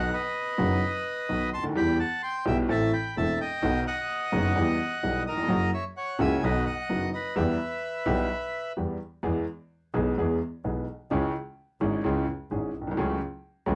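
A reedy, bright, airy bandoneon carries the melody up front, alongside a woody, intimate upright piano with audible action noise and a single bowed double bass, distant and earthy with a biting edge and light vibrato. Together they open this dramatic, tense tango at 128 BPM in 4/4, with a rubato feel in E harmonic minor. The bandoneon stops at 8.7 s, and at 9.2 s the harmony turns to E major as piano and bass continue to 13.8 s. The sound of this cut from a longer piece reflects a home cassette recording in a small room, with tape colour on the bandoneon and piano.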